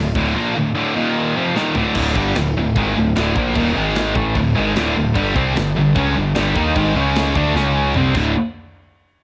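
A heavy metal excerpt opens at once on a wall of three distorted guitars playing a riff, the heavy, bright, high-gain guitar up front while a scooped guitar and a double-tracked, thick fuzz guitar sit behind it, all three carrying a cassette-tape grit. A growling picked electric bass with overdrive sits up front alongside them, and a tight metal drum kit with a medium-tuned snare, tight kick and rolled-off top drives a relentless, straight 4/4 at 150 BPM. Far beneath, a very quiet pipe organ on a full principal chorus holds sustained chords in a romantic voicing. The harmony centres on D minor, shifting through Eb5, G#5, G5 and C#5 power chords before returning to D minor. Drum fills mark the change into a new section around 2.0 seconds and close the passage near 8.4 seconds. The whole has the studio reverb and lo-fi character of a home cassette recording, giving this heavy, relentless clip a murky edge.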